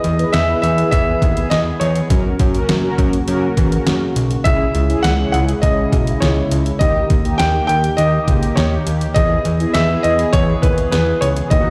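A melancholic, cool synth-pop passage cut from a longer piece opens with the full band together: an intimate concert grand piano carries the melody up front, its action noise audible and a tape echo trailing its short-sustained notes. Beneath it, a thumpy, overdriven 8-bit drum machine and a fat, saturated analog bass drive the groove. A round, brassy synth brass part with chorus and phaser fills in the accompaniment, while an evolving, detuned sawtooth pad with a filter swell holds chords in the background, all inside a large, reverberant room sound.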